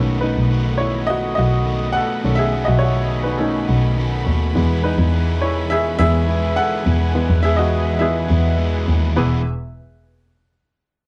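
This pop excerpt moves at 104 BPM in a straight 4/4 in E major, with an uplifting, warm mood. The upright piano takes a solo from the start to 9.2 seconds, and its clear, woody tone sits up front with audible action noise, short sustain and an intimate, polished presence. Beneath it, a bowed double bass plays low and earthy, with a biting edge and light vibrato. A crunchy, overdriven electric guitar plays a picked riff. In the background, a symphonic string section holds lush, smooth, even sustained chords with vibrato. The harmony moves from B7 to E, a new section begins at 9.2 seconds, and the dry, close sound recalls a 1970s studio.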